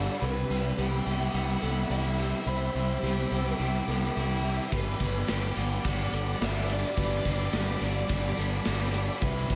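A soft string machine opens this hazy, blissful shoegaze and dream pop fragment with silky, sustained chords colored by phaser and ensemble chorus, alongside a dark clean electric guitar picking delayed arpeggios with a subtle chorus. Two overdriven semi-hollow guitars sit in the background playing a low riff, one bathed in lush chorus and the other in reverse reverb, while an up-front fingered bass with a round, fuzzy overdrive anchors the bottom. At 0.2 seconds a bluesy lead guitar enters with a distorted, delayed melody, as the harmony moves from Cmaj7 to Gmaj7. At 4.7 seconds a gated 80s drum kit arrives up front, with a punchy kick, medium-tuned snare and bright ride cymbal ringing in a stone room. The whole mix is soaked in a lush hall reverb, giving the straight 4/4 rock pulse a dreamy, blurred glow.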